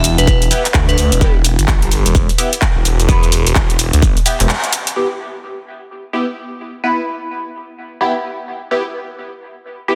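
Swung at 128 BPM in 4/4, this aggressive, swaggering bass house excerpt in E minor opens with a glassy synth bell on B4 through chorus, phaser and dub echo that ends at 1.4 seconds, a thick, swirling phased saw bass with overdrive and sidechain pumping, and an up-front dance kit of handclaps, filtered hi-hat and shaker in small room ambience. A punchy electronic kick joins at 0.3 seconds and drops out at 4.1, and a nasal, band-passed chord stab with lush chorus and dub echo enters at 0.5 seconds. The bass stops for a break at 4.5 seconds and the kit at 4.9, while the stab carries on alone until 10.0 seconds over a dense, heavily limited master.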